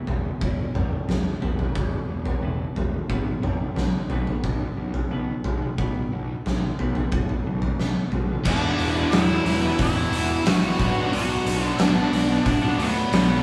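A clean, twangy twelve-string electric guitar opens this dark, angsty quiet-loud alternative rock excerpt at 0.0 seconds, playing compressed arpeggios through a digital delay over E5 and then B5 chords. A fuzz-laden picked bass with overdrive sits in the background, and an oversized, low-tuned acoustic drum kit up front carries a fat snare, a punchy kick and dark cymbals with a gritty, saturated edge, all at a steady 90 BPM in straight 4/4. At 8.4 seconds the twelve-string drops out and the loud section arrives over Esus2 and Bm. A bright fuzz guitar riff and a very quiet, double-tracked darker fuzz guitar riff enter at the change, and a cranked stack guitar joins them with overdrive and phaser, also in the background. An octave-fuzz lead guitar carries a distorted melody in a higher register above the heavy riffing. The band sounds as if it is playing live in one small stone room, with a moderate reverb around the whole mix.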